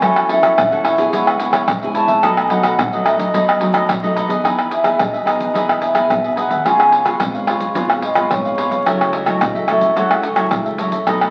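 A lively, playful samba and choro passage in E major at 109 BPM opens with an airy, mellow wooden baroque flute singing an expressive, tongued melody with vibrato from a distance. It is backed by a crisp picked cavaquinho, a fingerpicked classical nylon-string guitar with fresh strings and audible finger squeak, and a woody pizzicato upright bass sitting in the background. Close, dry hand percussion of tube shaker, pandeiro, tamborim and deep surdo sits up front, and from 4.4 seconds the flute takes a solo over Emaj7 and C#7 harmony, all colored by roomy studio reverb and the crackle of a very old 78 rpm record.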